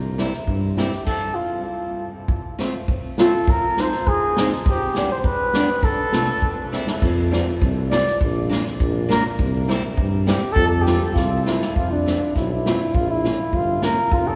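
Bathed in a cavernous church reverb, this festive, jolly fragment of alpine dance-band folk in F major moves at 101 BPM in a rubato 2/4, with a mellow, softly vibrato-tinged flugelhorn singing the melody up front over a boxy, picked parlour steel-string guitar and a punchy, distant country drum kit, while a smooth-topped tuba sounds briefly at the start, falls out through a full stop from 1.1 to 2.3 seconds, and returns at 7.0 seconds to carry the bass through a turn to Bb and a surprising closing Bbm.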